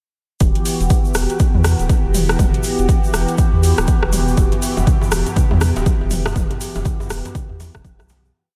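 This is a short, earthy and driving afro house piece at 121 BPM in 4/4, with a 60% swing on the sixteenths, set in E minor on an Emadd9 chord. From 0.4 seconds the track opens straight into its drop: a punchy, overdriven electronic kick plays four-on-the-floor up front, while a layered deep house kit adds metallic closed and open hats, a rim click and a low tom in a programmed hat-and-backbeat pattern, both kick and kit treated with overdrive and studio reverb. A grainy egg shaker plays hand-played sixteenths in the background. Underneath, a round, dark analog bass with a fast attack carries a dotted rhythm with sidechain pumping. A smooth, detuned sawtooth pad with a moving notch and chorus holds sustained chords, also pumping. At 4.5 seconds, very quiet, close and dry congas interlock while a tight, cracking djembe, distant in a large room, adds a cross rhythm, all set in light reverb with small room ambience as the piece fades out from 5.7 seconds.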